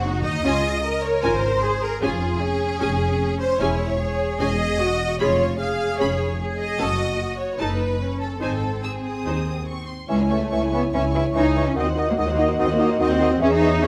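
A restless, stormy classical passage cut from a longer piece opens with bowed strings at 140-155 BPM with a rubato feel, a rich, focused violin section carrying the melody in the background over a warm, up-front second violin line, lush violas, smooth cellos and an even double bass section, shifting from Db major to C# minor at 3.6 s, before a pure concert flute, a dark, distant clarinet, a mellow cor anglais, a bassoon and a soft-attack French horn section holding sustained chords join at 10.1 s, all in a close, detailed recording with light reverb.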